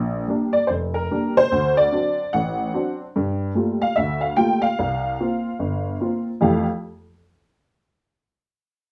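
A detuned, jangly honky-tonk upright piano plays alone from the start, with a woody, vintage tone sitting up front in a moderate studio room. This playful, swinging solo jazz fragment moves through Bb6, D7, Gm9 and C7sus4, reaching Fmaj9 at 6.4 seconds. The piano spans a range from deep bass to the upper middle register and stops at 6.7 seconds.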